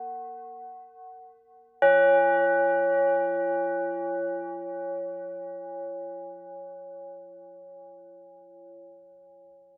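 The recording is dark and drenched in a huge ambient reverb with a long 7.2-second decay, its top end rolled off to leave a warm glow. Within this space, a solo tubular bells part sounds from 0.0 to 9.8 seconds, struck with a plastic hammer and touched with delay. Its tone is metallic and solemn, with a boxy, close character that keeps it up front. The bells move within a narrow compass from C#4 to F#4, tuned slightly low to A4 = 439 Hz, and ring out in free time. This brief fragment of a longer meditative piece has a haunting, world-tinged stillness.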